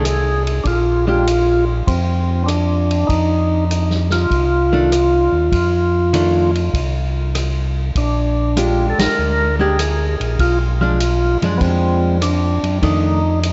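A greasy, soulful soul jazz organ trio opens together at once, cut from a longer piece and set in a vast, echoing cathedral-like space whose long reverb softens the sound and rolls off the highest treble. Up front, a tonewheel organ carries the melody in a full, percussive voice with key click and second-harmonic percussion, turning through a slow rotary speaker. A second, darker tonewheel organ supplies the bass line, round and clean, with chorus vibrato and its own slow rotary swirl. Behind them, a hollow-body archtop guitar, picked and compressed through an amplifier, comps the harmony, moving from Bb through F5 and Bb6 to Bdim7 and F13. A vintage drum kit in a natural studio-room sound swings the eighths on hi-hat, ride, rim click, a medium-tuned snare and a tight kick, and the whole band hits an accent at 8.9 seconds.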